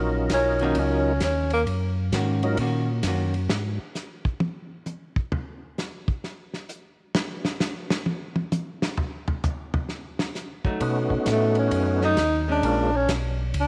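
Soaked in a moderate echo-chamber reverb, this bluesy, smoky soul jazz organ trio swings at 131 BPM in Eb minor, with a breathy tenor saxophone solo carrying the melody over a percussive, lightly overdriven tonewheel organ lead, a round, dark tonewheel organ bass line turning slowly through its rotary speaker, clean picked accompaniment from a hollow-body archtop guitar, and a fat-snared soul drum kit with dark cymbals that takes a solo from 3.5 to 10.8 seconds. The guitar returns at 10.7 seconds, the organs at 10.8 seconds, and the saxophone at 11.3 seconds in this cut from a longer piece.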